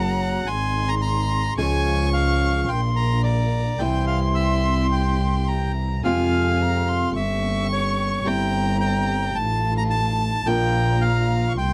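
Tango, melancholic and tense with a rubato feel, led by a reedy, close-miked bandoneon melody over a second line from a dark violin with expressive vibrato and portamento, fingerpicked flamenco guitar accompaniment, rich chamber string stabs in the background and an up-front bowed double bass with a nasal gut-string tone, set in light reverb within a shadowy, warm production.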